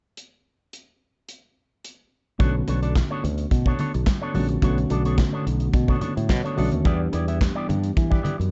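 Disco with a glamorous, sultry mood, this short piece cut from a longer track opens on a modern studio drum kit alone, its handclaps, hi-hat, punchy kick and medium-tuned snare sounding airy and polished up front. At 2.4 seconds the band enters over a Bm9 chord: a growly, bright fingered electric bass sits up front beside the drums, while a clean, twangy electric guitar runs through an envelope filter for a scooped, picked tone. A mellow tine electric piano, played through its built-in speakers, fills in the harmony and steps forward with a short fill from 6.0 to 6.9 seconds, leading into the chord change to Em7. Very quiet congas with a thin, damped skin and soft hands add a compressed, saturated shimmer beneath the groove. The whole production is dark and warm, with a studio ambience that keeps the top end rounded.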